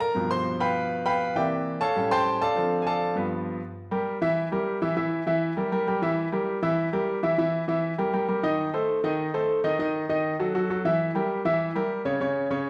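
A clear grand piano carries this short solo jazz passage alone from start to finish, its natural tone sitting up front. The mood is sunny and danceable, moving at a brisk 199 BPM in a straight 4/4 feel. The opening stretch runs through a quick turnaround of dominant and minor-seventh colors, passing G7, C13, A7alt and Dm7 before settling back on G7. From 3.8 seconds the harmony shifts into a darker run of diminished chords, from Edim through Adim/Eb and D#dim to C#dim7 at 11.0 seconds. The piano spans a generous range from G2 up to C6, and a recital hall reverb with a 1.2-second decay gives it a roomy, church-like glow. The piece is cut from a longer performance, ending at 12.7 seconds.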